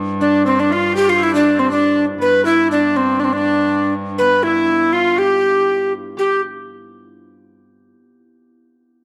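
Medieval dance in G mixolydian, this brief excerpt moves at 120 BPM in a straight 2/4 with an ancient, festive mood. Up front, a tenor recorder carries the melody with an airy, chiffy, tongued tone of wood and reed. A shawm plays a second line in the same register, distant and roomy in a folk style, sitting back in the mix. Beneath them, a single bowed, fretted viola da gamba holds a G2 drone with gut-string tone and light vibrato, ringing softly from afar until 6.2 seconds. A fingerpicked concert harp adds another second line in the background, its ringing notes caught in a slapback echo and sustaining to 7.4 seconds. A wet spring reverb and small room ambience give the whole performance a resonant setting.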